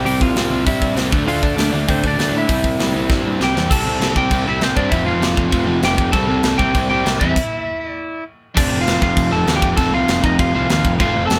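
A twangy, slightly broken-up lead guitar carries the melody up front over an airy, polished metal drum kit with bright cymbals, a growly fuzz bass and two overdriven rhythm guitars, one semi-hollow and one compressed, in the background, making a rebellious, energetic punk rock excerpt played live in one room, with a drum fill at 3.1 seconds and a stop at 7.4 seconds.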